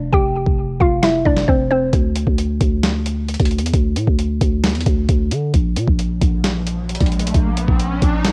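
A woody, warbling mallet-like synth pluck with a vintage FM tone and a noise layer opens this brooding, melancholic trap excerpt, its chorus, tape echo and cassette wear giving the melody a worn, mellow color before it drops out at 1.9 seconds. A growling, buzzy 808-style bass sits up front throughout, while a gritty, pitched-down sampler-style drum kit with a thumpy kick, medium-tuned snare and hi-hat drives a half-time boom bap feel through a digital ambience captured as a home cassette recording. An electronic riser enters at 6.6 seconds to carry the passage toward its cut.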